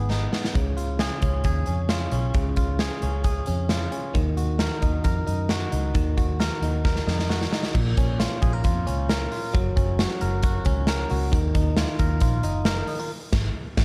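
A dark, warm studio sound frames this short cut from a longer jangly indie pop piece at 134 BPM in 4/4, its mood nostalgic and bright. A clean, twangy electric guitar recorded direct plays compressed, picked arpeggios colored by warbly pitch drift and digital delay, over a round, amped, foam-muted fingered bass and a big acoustic rock kit up front with a punchy kick, a medium-tuned snare, hi-hat and crash. The chords move from G#m through C# and D#m, then shift to A#m, F# and D#madd9 after a drum fill at 6.8 seconds, before a closing band accent at 13.1 seconds.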